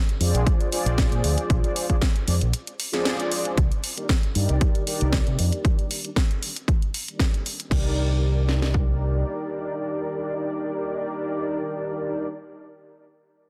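A lightly swung groove drives this sleek, sensual nu-disco excerpt, built from two layered, overdriven electronic house kits re-recorded in a large room: one carries the punchy kick and a cracking snare up front, while the other adds crash cymbal, hi-hat and more snare. Underneath, a fingered electric bass with an envelope filter sits close and direct in the mix, its warm tone rounding out the low end. Mellow synth brass supplies the accompaniment, a round, dark blend of detuned sawtooth and square waves with a sub octave, fast attack, sustained notes, vibrato and a chorus and tape-echo sheen. The harmony moves from a Bb7 chord through Cm7, and a filter sweep runs through an analog polysynth between 3.6 and 7.7 seconds. The drums finish by 8.9 seconds and the bass by 9.2 seconds, leaving the brass to ring on over a dense, heavily limited modern master with a digital ambience.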